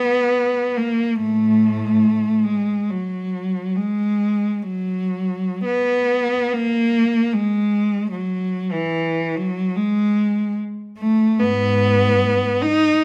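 Lyrical and nostalgic, this short classical fragment, cut from a longer piece, features a lone bowed cello playing freely with expressive rubato across its full 13 seconds. The single player's tone is rich and focused, with vibrato and a smooth top end, sitting up front in light reverb as it moves between the low and middle registers.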